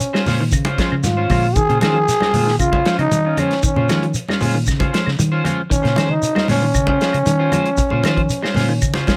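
A straight, steady four-beat groove drives this hypnotic afrobeat cut from a longer piece, held on a single Bbm9 chord throughout. A small-room soul drum kit with a tight kick, medium-tuned snare and rolled-off top sets the pulse, layered with a grainy, saturated shekere, and from 0.3 seconds a round, dark fingered electric bass and bright, hard-handed congas sitting back in the mix. Woody claves tick quietly in the background, while two clean, picked electric guitars fill out the harmony: one plays warm arpeggios through a lush chorus, the other plays bright stabs through an analog chorus. Up front, a raspy, growling trombone carries the solo melody in a pop style, close-miked with light vibrato and a slapback echo. Light reverb adds a touch of space to the driving groove.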